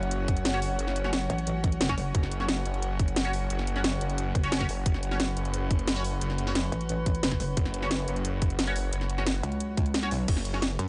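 A snarling sawtooth bass growls up front from the first moment, its detuned unison tone driven hard with distortion and overdrive, in this dark, futuristic slice of technical drum and bass taken from a longer piece. A tight, overdriven electronic kick and a layered kit with a cracking snare, bright hats and crash cymbal power a straight 4/4 drop, with the kick falling away at 9.9 seconds. A metallic FM wobble bass enters at 1.3 seconds, returns briefly at 4.3 seconds and comes back again from 6.7 seconds through the end, saturated and chorused. Further back, an eerie, nasal, inharmonic drone warbles with chorus, its own reverb and sidechain pumping, while a band-passed sawtooth chord stab plucks through phaser, analog chorus and dub echo. A distant, softly bowed studio string section floats beneath with sidechain pumping of its own, and the dry mix is rolled off at the top.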